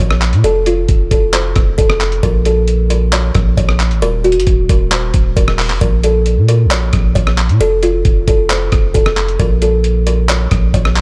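A woody kalimba carries the melody in this brooding, menacing trap-flavoured hip hop excerpt, its short thumb-plucked notes sounding hollow and airy and trailed by a delay. Beneath it, a long sustained 808-style bass hums with a deep, mellow sine tone that hits with a fast attack and then decays, sitting up front in the mix. A dusty soul sampler-style drum kit enters at 0.1 seconds with handclaps, hi-hat, rim clicks and a thumpy kick. The kit sounds compressed and gritty, with a tape-like character and the air of a large room, and it is also placed up front. The half-time feel and the dark chord cycle of F, Bbm and Ebm give the short passage a heavy, shadowy pull, while the overall sound stays dry and close.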